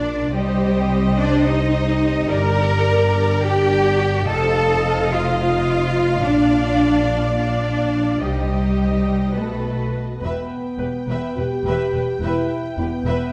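In a straight 7/8 pulse, this relentless, dramatic cue from an epic orchestral film score sets a distant symphonic violin section carrying the melody over a very quiet, expressive studio violin second line, smooth viola accompaniment, sustained chords from a close studio string section that drops out at 10.2 s and a background French horn section with a smooth top, all anchored by a clear, focused cello section and an up-front, woody double bass section, with a dark production and wet scoring-stage reverb.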